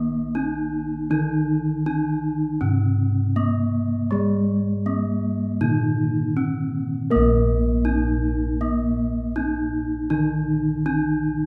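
A straight, even pulse in four underpins this serene, ceremonial passage of Javanese gamelan, cut from a longer piece. A bronze metallophone struck with a horn mallet carries the melody up front, its bright, ringing tone shimmering with the beats of paired tuning. Beneath it, a second metallophone played with padded disc mallets supplies the accompaniment in a soft, mellow, dark and smooth voice. Bossed gongs hold the bass with a round, airy, beating metallic sound, sitting just as forward in the mix as the melody. The three parts sound together from 0.0 to 11.5 s, and the opening phrase returns at 7.1 s, all carried by the lingering reverb of a recital hall.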